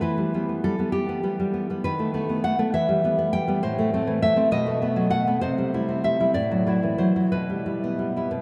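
Wistful and passionate, this short excerpt from a romantic piece for solo classical guitar moves in a rubato 6/8 at about 60-69 BPM in E minor. The fingerpicked nylon-string guitar sits up front with a full-bodied, deep tone, ranging from A2 to G5 across a passage that opens on Em, touches Am, C and D9/A, and settles on Em/B near 7.3 seconds. A cathedral reverb with a 6.8-second decay places it in a vast, echoing space.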